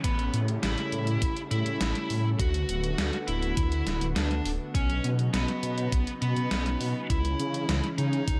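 A dark, distorted high-gain lead guitar carries the melody with digital delay over a deep, rumbling detuned saw bass, a lush, warbling unison pad with chorus and sidechain pumping, a thumpy electronic kick, and a gated 80s drum machine supplying hi-hat and a gated-reverb snare, while a very quiet downlifter runs through the first 2.4 seconds in this cinematic, driving synthwave cut that moves through A7, D6, Badd9 and C#m in a dry mix.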